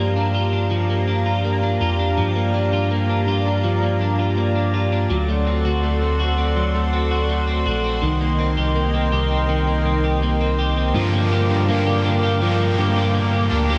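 A straight 4/4 pulse at 82 BPM carries this ethereal, hazy dream pop fragment in G minor, where a mellow, clean tine electric piano holds the bass, a slightly broken-up electric guitar picks compressed arpeggios through ensemble chorus and delay, and a hollow, flute-like pad sustains airy chords over Gm7, D7 and Cm7, until a bright, double-tracked cranked stack guitar with overdrive and harmonic tremolo joins at 10.9 seconds, the whole set inside a moderate shimmer reverb.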